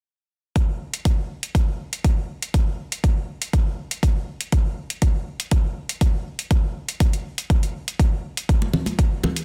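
A deep, overdriven electronic kick sits up front in this hypnotic, spiritual afro house excerpt at 121 BPM, joined by metallic, gritty hi-hats that carry a large-room ambience, while bright, hard-hand acoustic congas arrive close and up front in a small room at 8.6 seconds within a dense, heavily limited modern master.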